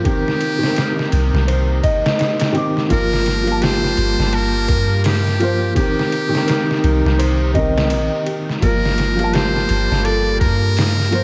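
Light reverb and a digital ambience surround this brief cut from a longer trip hop piece, with vinyl crackle on top and the highs trimmed at 10.6 kHz. At 84 BPM in 4/4 with a swung sixteenth-note feel, the mood is smoky and brooding, moving between Cm7 and Gm9 in G minor. A gritty, pitched-down sampler-style kit with a thumpy kick, medium-tuned snare, hi-hat and ride sits beside a soft, round 808-style bass that is deep, tube-saturated and up front. A dark, woody upright piano with harmonic tremolo and tape echo plays accompaniment, while a clean, fingered electric guitar adds arpeggios with tape echo and a distant chamber string section holds reedy, gut-string chords in the background. Over this, a buzzy, close-miked trumpet with a metal mute carries the melody with scooped notes, slight vibrato and tape echo, and from 0.9 seconds a very quiet, tense sawtooth drone hovers on G4.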